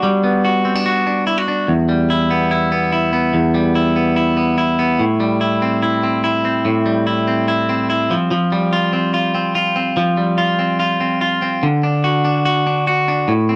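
A dry, close recording in a 1970s studio style puts a lone clean electric guitar up front, its picked tone twangy and scooped with a touch of light reverb. This brief, bright and breezy indie pop fragment in 4/4 has a straight feel, with the guitar moving through Gmaj7, Em, Am7 and Fsus2 before a new passage opens on D at 11.6 seconds.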